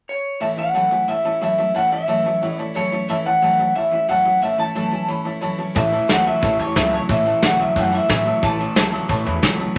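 A twangy, slightly broken-up electric guitar opens this rowdy, rollicking rockabilly cut from a longer piece, taking the melody up front from 0.1 seconds over a brisk 180 BPM in A major. Almost at once a second electric guitar through a small old amp settles into a low riff, joined by a bright, full-bodied picked steel-string acoustic guitar and a worn, slightly detuned upright piano comping high in its range. At 5.8 seconds the band fills out as a pizzicato upright bass with thumpy gut strings and a soft brush drum kit enter, the kit's tight kick, medium-tuned snare and hi-hat sitting close and present. The lead guitar's lo-fi bite stays on top while the acoustic's dreadnought body fills the middle and the piano's woody, natural tone rings out above it. A wet studio reverb gives the whole a lively, roomy sheen, with the melody dropping out at 9.4 seconds as the rest carry on to the cut.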